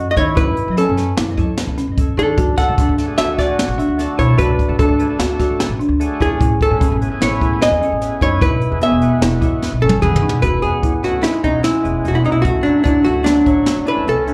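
A dark, clean hollow-body archtop guitar, picked and up front with plate reverb, slapback and tape echo, carries the melody in this bright, intricate progressive instrumental at 149 BPM in 5/4, cut from a longer piece and heard live through a club PA. A warm, vintage flugelhorn with vibrato adds a second line, and a woody, rustic folk marimba plays arpeggios, both with plate reverb and slapback echo, over pizzicato upright bass and a brushed jazz kit with a boomy kick and high-tuned snare that plays a fill from 9.6 to 10.4 seconds. A gritty, overdriven tonewheel organ with key click and slow rotary speaker joins in the background at 2.7 seconds, as the chords move from F#m7 through D, Amaj7 and E6 to Dmaj7.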